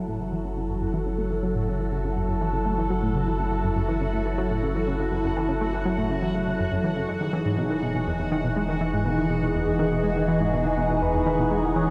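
A tight, driving sequenced synth riff in a straight 122 BPM 4/4 pulses through this hypnotic, cosmic excerpt of ambient space music in F# dorian, over a deep, round sine sub bass and beneath an up-front, swirling phased analog pad that holds F#m7 before shifting to Emaj7 at 7.1 seconds, while a bubbling, resonant stepped-filter texture fades in high above and a soft, octave-layered lead with mellow vibrato arrives at 11.0 seconds, all set in a dreamy, reverb-soaked cassette-tinged space.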